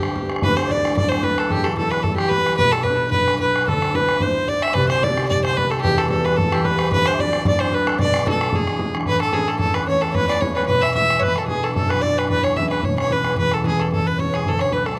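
A bright, rollicking Celtic reel with a light swing features a single bowed fiddle carrying the melody up front, its reedy gut-string tone close and full, while an airy wooden baroque flute with vibrato plays a tongued, expressive second line from the background, both touched by slapback echo. Beneath them, a mellow concert harp rings out a thumb-plucked accompaniment, and a boomy, distant bodhran supplies the percussion with the open sound of a large room. The dry outdoor recording moves into a new section at 9.1 s and is cut from a longer performance.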